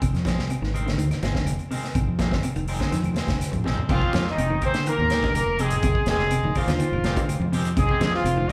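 Intense and defiant, this afrobeat fragment opens on a gritty, saturated breakbeat kit with a punchy kick and dark cymbals, a round fingered electric bass, very quiet woody claves and low-tuned congas, a clean picked guitar playing arpeggios in the background, and a twangy, slightly broken-up guitar adding stabs from 0.3 seconds, both guitars washed in spring reverb. After a drum fill at 3.2 seconds, a tight, up-front horn section with light vibrato takes the melody at 3.9 seconds as the harmony moves from Fm7 to Fm9, while a distant tenor saxophone plays a second line beneath it. The band sounds live in one large, reverberant studio room.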